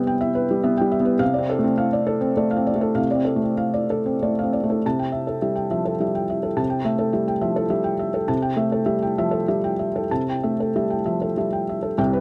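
A dry, close 1970s-style studio sound with light reverb frames this peaceful, tender fragment of neoclassical minimalist piano, where a single felt-muted upright, mellow and intimate with its action noise audible up front, moves rubato in 3/4 at around 92-107 BPM, tuned to A4 = 442 Hz, from Cmaj7 through Dm7/C before settling onto Am7/C at 4.8 s across a range from C2 to A5.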